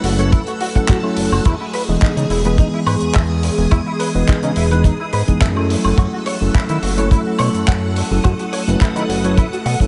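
Nu-disco at 106 BPM in F# dorian with a light 16th-note swing, sleek and sensual, where an up-front fat detuned sawtooth bass and a tight, dark kick entering at 0.3 seconds drive a damped 70s kit of handclaps, hi-hat and woodblock beneath a mellow tine electric piano with delay, a twangy, bright clean guitar riff with chorus and delay, and lush sidechain-pumped string machine chords with phaser, all floating through a dreamy cathedral reverb over F#m7 and Emaj7 in this short cut from a longer piece.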